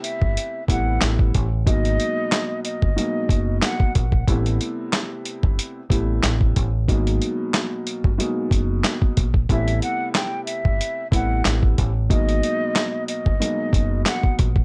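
Light reverb surrounds this reflective boom-bap hip-hop excerpt, which moves at 92 BPM in 4/4 with a slight swing on the sixteenths. Up front, a compressed, sampler-style soul drum kit with a gritty, tape-warm character delivers a thumpy kick, a medium-tuned snare, hi-hat and handclaps, re-recorded in a small room. A deep dub fingered electric bass joins at 0.2 s, round and punchy, holding a low register. A dark upright piano supplies intimate accompaniment throughout, woody and boxy with audible action noise and long sustain, as the harmony alternates between Am7 and G#m7. Over this, a breathy, hollow silver concert flute, close-miked and mellow, carries the melody with vibrato and tongued notes, treated with plate reverb and analog delay; it falls silent at 3.9 s and returns at 9.5 s.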